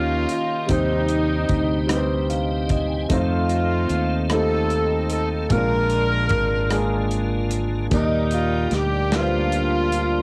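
A clear, close-miked alto saxophone with vibrato sits in the background beside a tight, smooth-topped pop-style horn section, both carrying the melody from the outset of this slow, hopeful gospel excerpt in 6/8 at 50 BPM in Eb major. Beneath them are an intimate, vintage grand piano with audible action noise, a round, dark fingered bass up front, and a piping, scooped tonewheel organ with key click, slow rotary speaker and light overdrive, while a distant, roomy French horn section holds very quiet sustained chords. A studio drum kit with a medium-tuned snare, rim click and hi-hat enters at 0.3 s, and the piano and organ each add a fill from 1.9 s to 3.1 s as the soulful harmony moves from Eb7 through Fm13, F7 and Bb7 to Ebmaj7, with plate reverb on the melody parts, analog delay on the pop horn section and a cassette-tape hue on the home recording.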